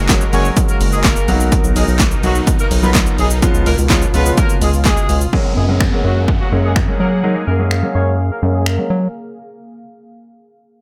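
Upbeat and carefree, this short dance-pop excerpt rides a straight 4/4 feel through a drop, cycling from F#add9 through Bmaj7 and C#7 before landing back on F#add9. A punchy analog drum machine sits up front with finger snaps, handclaps, hi-hat, shaker, snare and a hard-hitting kick, its overdriven grit touched by a short room on the snare, claps and hats, while a round, nasal analog bass built from square and sine tones pumps beneath it with a fast, plucky attack. A clear concert grand piano adds polished accompaniment chords, filtered and pumping in time, and a sweeping, detuned sawtooth pad glows bright with chorus in the background, its slow attack and long release giving the harmony an evolving haze. Above them a tight horn section carries the melody with vibrato, sounding distant and roomy through delay and a low-pass filter. At 5.3 seconds the drop gives way to a filter sweep as an electronic downlifter enters, carrying the passage to its cut-off at 9.1 seconds in a dry, close mix.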